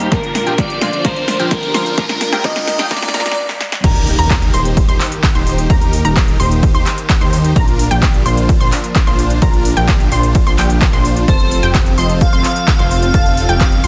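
Anthemic and emotional festival progressive house cut from a longer piece opens with a build-up in which a huge, compressed supersaw riff sweeps through a filter, bright, decaying pluck arpeggios sound while a very quiet lush pad sustains, and a twangy electric guitar on the edge of break-up, an airy, dreamy lead, a riser and overdriven big-room drums with a punchy kick all push forward. Then a brief stop gives way to an impact and the drop at 3.8 seconds, where a fat, pumping analog bass enters and the lead returns at 11.3 seconds.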